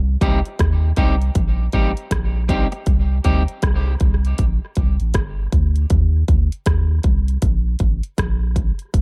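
Meditative and hypnotic, this short dub reggae excerpt pairs a deep, round sub bass with punchy, layered electronic drums of hi-hat, kick and rim click sitting up front in a dark digital ambience, while a picked electric guitar at the edge of break-up adds tape-echoed accompaniment only from 0.2 to 3.4 seconds over a swung groove moving from Cm to Eb5 at 5.9 seconds.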